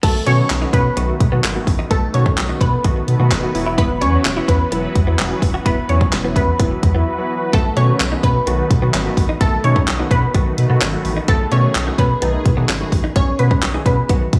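Carefree and upbeat, this dance-pop drop moves on a straight feel, with a punchy, up-front electronic drum kit of kick, fat snare, hi-hat, handclaps and crash, and a deep, saturated sub bass that pumps with the sidechain. A detuned, round analog pluck carries the melody through chorus and a diffuse ambient delay, while mellow analog keys accompany in the background and an evolving, full-bodied supersaw swell holds sustained chords there too, and a very quiet, clean, direct-recorded electric guitar picks a riff. A brief break at 7.1 seconds interrupts the drop, and the whole mix is soaked in plate reverb for a dreamy sheen.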